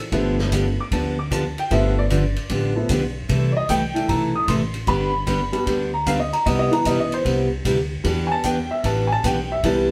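Western swing country with a playful, swinging lilt, this short passage cut from a longer piece features a clear upright piano taking a solo across its full length, its woody, slightly detuned tone carrying a long sustain. A picked steel-string acoustic guitar sits up front beside it, bright and full-bodied with the ring of a dreadnought. Underneath, a pizzicato upright bass on gut strings gives a dark, thumpy foundation. A big-band drum kit swings from a distance on hi-hat, ride cymbal, snare and a punchy kick, sounding roomy with a medium-tuned snare. The band plays live together in one studio room with a moderately reverberant ambience, moving through chords from G7 to C6, G, Cmaj7 and Em7.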